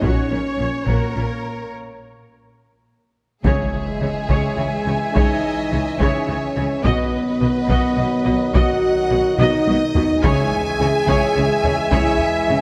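Epic orchestral film score in a dramatic 6/8, where lush bowed violins carry the melody over a second violin line, rich violas, dark and distant French horns, and a background bass of intense cellos and double basses, while a taiko ensemble pounds with heavy sticks, a huge dark impact and very quiet round timpani strike at 3.4 s, and clear trombones join at 3.5 s, set in a wet scoring stage reverb.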